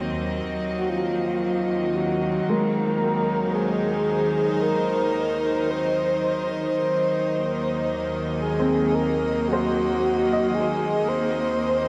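Spacious and reflective, this slow ambient passage at 56 BPM is cut from a longer piece and drifts over Ebm before settling onto Ab9/Eb and closing on Bbsus2/Eb. A rich, earthy chamber string section holds sustained chords up front throughout, bowed with light vibrato and bathed in shimmer reverb, while a nasal, reedy cello section with a gut-string, period-style tone anchors the bass on Eb2 and fades in from 2.5 seconds. A twinkling, barely audible granular texture sparkles only in the opening seconds, and from 0.8 seconds a breathy, flute-like synth lead carries the melody between F4 and C5, soft and sustained with chorus, vibrato, delay and shimmer reverb. At 2.5 seconds a felt-muted upright piano enters with mellow, intimate arpeggios, its thin felt tone trailed by delay and shimmer reverb. The whole sits in a lush hall reverb with a dark, warm production that keeps the space feeling deep and unhurried.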